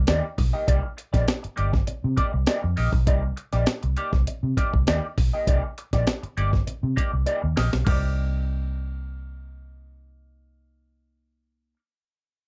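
A dark, round, foam-muted electric bass opens this sly, cool funk excerpt at 100 BPM in 4/4, playing with a punchy, amped tone up front in the mix. A moment later a gritty, compressed breakbeat kit enters, its pitched-up, sampler-style sound built on a thumpy kick, a medium-tuned snare, hi-hat, crash and toms. Alongside it, a clean semi-hollow electric guitar adds picked, hollow-body accompaniment colored by wah, sitting further back than the rhythm section. The harmony rests on a Cm9 chord in C minor. A drum fill at 7.3 seconds leads into a new section, after which the drums drop out at 8.0 seconds, leaving bass and guitar to carry on in the dry, close 1970s-style studio sound.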